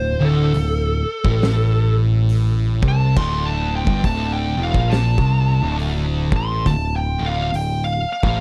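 Stoner and doom metal in D minor at a sludgy, hypnotic 69 BPM with a swung feel, this dry, close 1970s-style recording opens on a dark, fuzzed-out lead guitar soloing over two thick fuzz guitars grinding out a low riff, one of them sitting in the background, while a growly, up-front picked bass with overdrive anchors the bottom and an oversized, low-tuned drum kit with a fat snare, punchy kick, hi-hat and crash crashes in at 0.5 seconds, all in a short excerpt cut from a longer piece.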